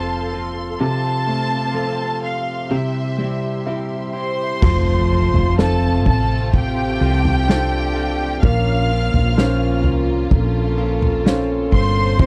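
A dry, close 1970s-style studio sound frames this hopeful, heartfelt pop ballad excerpt in F major at 64 BPM, where a lush, vibrato-rich violin section carries the melody with a slapback echo over intimate concert grand piano, a focused symphonic string section holding sustained chords, compressed clean electric guitar arpeggios in the background and a growly, round fretless bass up front, until at 4.6 seconds a mellow, tight French horn section adds a second line and an acoustic drum kit played with bundle sticks enters with punchy kick, snare, toms and crash, joined at 4.8 seconds by a very quiet electronic impact as the chords move from F toward Bbmadd9.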